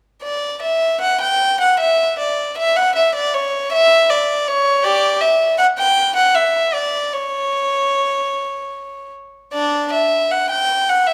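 Flowing and serene, this brief fragment of a baroque-style suite movement for solo violin moves in a supple triple metre with a rubato feel, the single bowed line ranging from D4 to G5 between 0.2 and 11.1 seconds. The violin sits close and up front with an airy, nasal gut-string tone and a reedy, period-style edge. A moderate recital-hall reverb surrounds the instrument, and a faint mains hum lies beneath.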